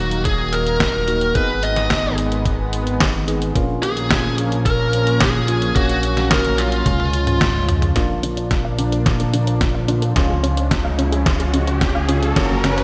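Cinematic and moody, this synthwave excerpt opens with an up-front, bluesy overdriven lead guitar carrying a distorted, delayed melody until 7.6 seconds, over a lush, detuned unison pad with sidechain pumping, bright tine electric piano stabs in the background, and a glossy, chorused synth bass. A detuned 8-bit drum machine with a medium-tuned, up-front snare, hi-hat and toms is soon joined by a thumpy electronic kick, and a drum fill at 6.9 seconds leads into a new passage at 8.0 seconds where a round analog pluck arpeggio enters and, along with the electric piano, sweeps through a filter as a riser builds from 9.9 seconds. The bright 1980s-style digital production sits in a moderate hall reverb.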